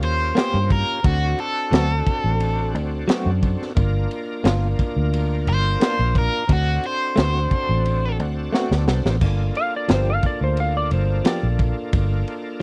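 Soulful and brooding, this straight-eighth soul blues excerpt in G minor at 88 BPM opens with a bright, overdriven stack guitar solo shimmering with harmonic tremolo over a shouting tonewheel organ with key click and slow rotary speaker, a round, foam-muted bass, a gritty breakbeat kit with punchy kick, high-tuned snare and dark cymbals, and compressed, direct-recorded clean guitar stabs with tremolo, until an organ fill at 7.8 seconds and a drum fill lead into a dark lap steel slide solo with volume swells from 9.6 seconds, all captured in a dry, close 1970s-style studio sound.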